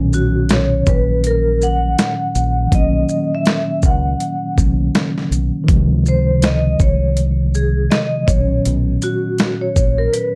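Dreamy and mellow, this short lo-fi hip hop excerpt in B major moves at 81 BPM in 4/4 with a 16th-note swing, its chords drifting from Bmaj9 to C#maj9 at 5.7 seconds and back to Bmaj9 at 8.3 seconds. Up front, a clean tine electric piano heard through its built-in speakers and softened by a low-pass filter plays the accompaniment, while a metallic, ringing vibraphone struck with medium mallets carries the filtered melody with a fast motor vibrato. Underneath, a dark, round fingered electric bass anchors the low end, and a gritty, overdriven sampler-style soul drum kit of hi-hat, shaker, medium-tuned snare and thumpy kick sits compressed and prominent, all within a light reverb.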